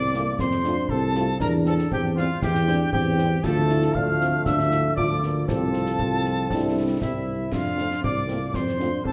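The trumpet section opens at 0.0 seconds with a dark, tight melody, joined at once by a bright, pure piccolo line with vibrato and a tongued attack, a mellow euphonium in the background, and a punchy tuba bass sitting up front with light vibrato. This is a proud, spirited military-style march for wind band in F major, moving at 118 BPM in a straight 2/4. A French horn section fills in warm accompaniment behind the others, while concert snare, bass drum and clash cymbals with dark cymbal tone sound close and dry. The harmony moves from F through C/E and D minor to F/C and C before settling back on F at 7.5 seconds. The players share a recital hall with a reverb of 1.6 seconds, and the passage, cut from a longer piece, runs about 9.1 seconds.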